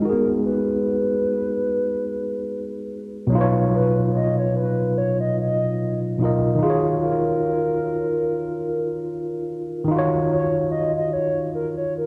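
Swung sixteenths at 73 BPM in 4/4 carry this nostalgic, melancholic hip hop fragment, where a worn, slightly out-of-tune tine electric piano, lightly overdriven as if through built-in speakers, sits up front with low-pass filtering and tape echo across Abm7, Badd9(#11) and Ebm7, while a hollow, woody clarinet-like synth lead with soft attack, vibrato and chorus carries a sustained, mellow melody through its own filter and tape echo in an echo-heavy mix with light studio reverb.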